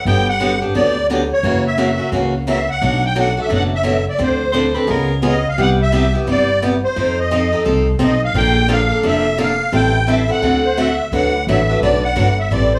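A shimmering, reedy musette accordion opens this playful stretch of acoustic string swing, carrying the melody up front with its wet musette tuning set in plate reverb. Almost at once a boxy, picked swing-style acoustic guitar and a woody, thumpy upright bass on gut strings join in, both up front, driving a lilting swing beneath the tune. Between 4.5 and 5.2 seconds a growling soprano saxophone slips in with a brief, raspy second line, its scooped notes, vibrato and soft subtone attack adding a gritty jazz flavour. The harmony moves restlessly through colourful seventh chords, and a new section arrives at 11.1 seconds on a sixth-ninth chord. A short club-like reverb gives the group a lively, intimate sense of space in this fragment of a longer piece.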